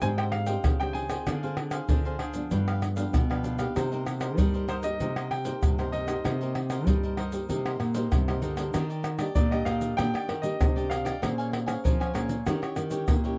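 A straight 4/4 groove drives this short excerpt of samba and choro, carried by up-front percussion of tube shaker, pandeiro, tamborim and a tight surdo, played with hard hands in a small room. Over it, a warm baby grand piano with short sustain sings a yearning, bittersweet melody, stopping at 12.1 seconds. A crisp, picked cavaquinho and a deep, fingerpicked classical nylon-string guitar fill in the accompaniment. A second nylon-string guitar, dark and thumb-plucked, holds the bass from the background. The harmony moves through Abmaj7#11, Dm7b5, G7 and Cm7 before brightening at 8.7 seconds into a new section built on Ebmaj7, Bbm9 and Eb7b9. The sound is dry and close, like a 1970s studio recording.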